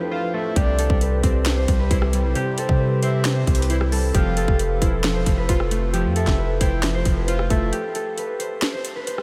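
Hip hop trap excerpt at 134 BPM in a half-time feel, dreamy and triumphant, where a ringing, fingerpicked concert harp carries the delayed melody over glassy, warbling digital keys, a hollow, dark pad sitting in the background and a breathy flute-like synth lead with vibrato, all three dressed in chorus and moving from Fmaj7 to Cmaj7 and back to Fmaj7. At 0.6 seconds a deep, mellow 808-style bass and an up-front trap kit arrive, the kit bringing a hard-clipped kick, sharp snare, metallic hats, rim clicks and finger snaps with a tape-warm edge. At 7.7 seconds the keys, pad, lead and bass drop away, leaving harp and drums in a light digital ambience.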